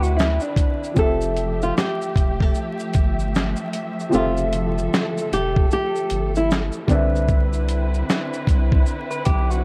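A dusty, sampler-style drum kit sets a swung, laid-back groove in 4/4, its thumpy kick, medium-tuned snare, handclaps, hi-hat and shaker sitting gritty and compressed up front, while a thick, saturated sub bass with a fast attack anchors the low end. This is a dreamy, cosy lo-fi hip hop piece cut from a longer work, with a dark, woody upright piano, worn and slightly detuned, comping through the whole passage alongside a bowed studio string section that holds sustained chords with vibrato and portamento. From 1.0 to 6.5 seconds a fingerpicked flamenco guitar carries the melody, its tone softened by a low-pass filter and tape echo. An electric guitar through a small old amp, slightly broken-up and picked, adds a second line at the very start and again from 9.1 seconds, also filtered and echoed. Harmony drifts from Cmaj9 to Fmaj9 and back, all wrapped in light reverb, small room ambience and a layer of vinyl crackle.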